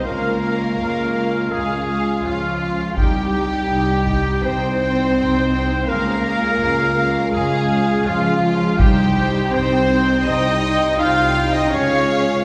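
Hard-stick taiko hits, close and dry, break into this epic orchestral film-score excerpt in two bursts, at 3.0 and 8.8 seconds. Around them, a relentless body of bowed strings holds steady. A dark, distant violin section carries the melody high up with expressive vibrato, while a second violin section plays a focused, smooth-topped line beneath it. Violas with portamento and a rich, even cello section sit in the background, and a bowed double bass section anchors the low end. Clear, punchy French horns sustain chords behind the strings, and a roomy trumpet section adds stabs as the harmony alternates between Db and C minor. The lush ensemble is heard in the reverberant space of a church or concert hall.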